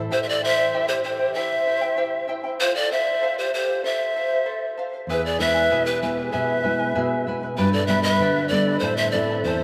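In a straight 2/4 at 96 BPM, this festive yet melancholic Andean folk excerpt moves through C, F, E, G and Am. An up-front pan flute carries the melody from 0.1 seconds with a breathy tone, crisp chiffy attack and unsteady vibrato, joined by a hollow, distant large quena on a mellow second line, while a shimmering fingerpicked charango with double strings accompanies throughout. A dark, deep nylon-string guitar, thumb-plucked and up front, sounds only briefly at the start and then returns at 5.1 seconds, and the ensemble rings out in a vast, echoing cathedral reverb.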